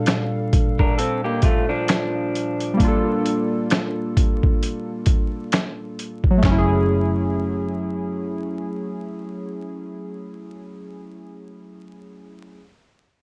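Lo-fi hip hop at a slow 66 BPM with a swung, melancholic and nostalgic feel, built on warbling, detuned synth keys carrying Gm9 under vinyl crackle and light reverb, as gritty, pitched-down boom bap drums with a thumpy kick, snaps and handclaps sit up front. Early on a dark, slightly broken-up electric guitar adds a brief, filtered second line through analog delay. Around 6.4 s the harmony shifts to F#m9 and a round, foam-muted bass enters, while the drums drop out at 6.7 s, leaving keys and bass to carry this fragment of a longer piece.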